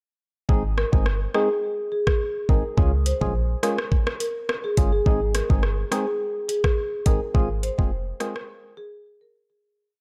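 A sparse, summery dancehall beat opens at 0.5 s: an electronic drum kit up front with a knocking kick, metallic hats and rim clicks, a punchy, tight 808-style bass with syncopated low notes, and hollow, organ-like stabs with chorus playing syncopated chords. From 0.8 s a smooth marimba struck with medium mallets carries a bouncy, syncopated hook with delay over a simple major-key progression. The whole short piece has a dark, digital ambience, and it fades out from 7.3 s as the beat breaks away, leaving the marimba alone at the close.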